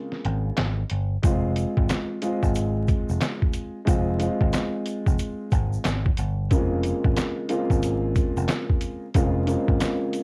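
Vinyl crackle, cassette tape and light reverb frame this tough, dark boom-bap hip-hop fragment in F minor, which moves at 91 BPM with a swung sixteenth-note feel. A boxy, mellow grand piano, filtered through tape, carries the chords from Bbm9 to Fm, joined almost at once by a muffled, pitched-down sampler drum kit with a thumpy kick, medium-tuned snare, handclaps and hi-hat, while a picked electric bass with a direct, amped tone sits up front in the low register. From 1.2 seconds, a grainy egg shaker rustles faintly in the background.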